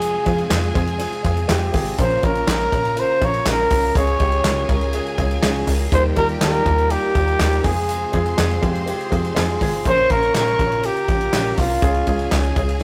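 A breathy, whispered trumpet carries the melody up front over dark, woody upright piano, a punchy filter-plucked analog bass, a natural country drum kit with handclaps and ride, a rich violin section in the background and a very quiet rotary-speaker tonewheel organ in this warm, hopeful piano-driven pop excerpt at 122 BPM, moving through Fm, Bbm, Db and Ebadd9 in a stone room with rough tube-saturated rehearsal-room grit.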